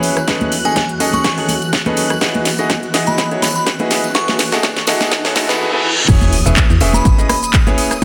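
Feel-good, uplifting piano house at 124 BPM with a light 16th-note swing, where a brilliant, up-front concert grand riff with sidechain pumping, low-pass filtering and dub echo leads over a layered house kit with a cracking snare and metallic hats, tambourine and congas played with hard hands, a shimmering string-machine violin bed in the background, a cloudy, evolving granular pad that ends at 5.6 seconds, and a glassy, warbling FM bell melody, while a punchy electronic kick, very quiet risers, a reverse cymbal and a sub drop build toward the drop at 6.1 seconds, where a round, dark FM bass arrives beneath a lush hall reverb.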